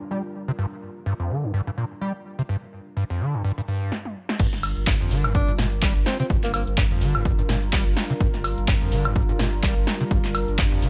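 An overdriven acid bass drives this trippy, gritty acid house fragment, its squelchy, resonant square-wave riff sitting up front with a filter sweep, analog chorus, 12-bit sampler grit and analog delay. Beneath it, a warm, dark sawtooth pad sustains a Gm7 chord, detuned with a sub octave and chorus and pumping against the sidechain. At 3.9 seconds the music stops for a fill from a punchy analog drum machine, whose snare, handclaps, hi-hats, toms, woodblock and crash cymbal are overdriven and tamed by low-pass filtering, with a short room on the snare, clap and hats. The drop arrives at 4.4 seconds, bringing in a distorted electronic kick and a deep, round sine sub bass with tube saturation and sidechain pumping. At 5.3 seconds a breathy alto saxophone offers a brief, intimate, pop-style solo phrase with vibrato and scooped notes, roughened by sampler grit and trailed by delay, while the mix sits in a digital ambience.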